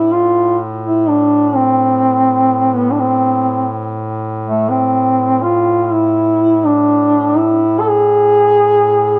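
A dark duduk and a clear duduk begin together at 0.0 s in this short Caucasian lament, cut from a longer folk piece in A harmonic minor at a rubato 62 BPM in 4/4. The dark duduk carries the melody up front between A3 and A4, its vibrato and scooped notes giving the line a longing, mournful voice, while it also sounds distant and roomy. Beneath it, the clear duduk holds a quiet drone on A2, with scooped notes of its own in the same folk style. Tuned to A4 = 438 Hz, both parts play through to 9.2 s. A moderate concert hall reverb with a 2.0-second decay surrounds the pair, and the production leans dark and warm.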